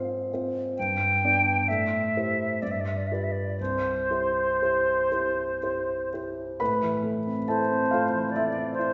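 A silver concert flute carries the melody from 0.8 seconds, its pure, metallic tone shaped by expressive vibrato and tongued notes, sitting up front with a slight sense of distance. A grand piano opens the recording at 0.0 seconds and supports it throughout, its intimate sound marked by audible action noise and long sustain. This serene, romantic classical duo moves in a rubato 3/4 at roughly 59-72 BPM in C major. The harmony passes from Fm/Ab through G, Am7 and G7 to a settled C, then turns to Am as a new section begins at 6.6 seconds. A reverberant recital-hall acoustic surrounds both instruments with a soft, mellow top end, lending a warm glow to this passage cut from a longer piece.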